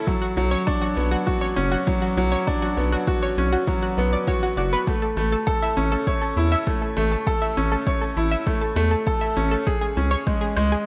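Light reverb and a digital ambience give this piano-and-strings electronica passage, cut from a longer piece, a polished, airy sheen. At 100 BPM in a straight 4/4, the mood is hopeful and tender, built around a bright grand piano riff that sits up front, with short sustain and a trail of delay. An analog pluck spins arpeggios above it, its sawtooth and square-wave tone shaped by filter sweeps, chorus, delay, vintage 12-bit sampler grit and sidechain pumping. Beneath it, a round analog bass holds the low end with a deep, dark, sustained tone that also carries sidechain pumping. A punchy, overdriven electronic kick drum and a quieter overdriven shaker keep the pulse. The harmony moves from Bmadd9 to A at 4.9 seconds and lands on C#5 at 9.7 seconds.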